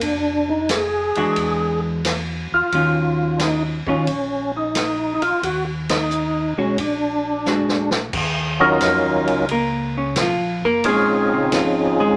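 A swung 89 BPM groove in 4/4 drives this bluesy, late-night soul jazz organ trio in Eb minor, where a fat, lightly overdriven percussive tonewheel organ carries the melody through a slow rotary speaker and chorus vibrato, a round, dark tonewheel organ holds down the bass, a vintage drum kit with a punchy kick and rolled-off top keeps time, and a picked hollow-body jazz guitar enters at 1.2 s to comp before taking a clean, dark solo from 8.1 s, all set in a wet club reverb, with a band accent near 5.8 s and a drum fill leading into the solo.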